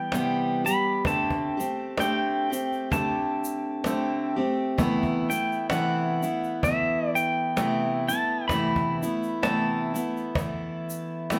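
A slow 64 BPM pulse with a gentle swing carries this melancholic, wistful acoustic folk excerpt in A dorian, where a twangy, compressed pedal steel guitar sings a high melody with fingerpicks, slide and volume swells over a full-bodied, up-front picked dreadnought moving through Cmaj7, D7sus4 and Amadd9/C, while a woody cajon with faint snares and a grainy, close egg shaker keep time, the band sounding live together in a moderately reverberant large studio.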